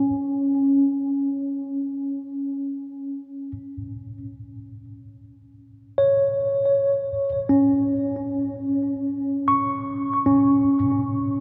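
Drenched in a huge ambient reverb with a 7.9-second tail and recorded to cassette tape, this melancholic, serene ambient passage in free time, cut from a longer piece, features a clean, up-front tine electric piano heard through its built-in speakers, playing alone with delay between C#4 and C#6 until 10.8 seconds.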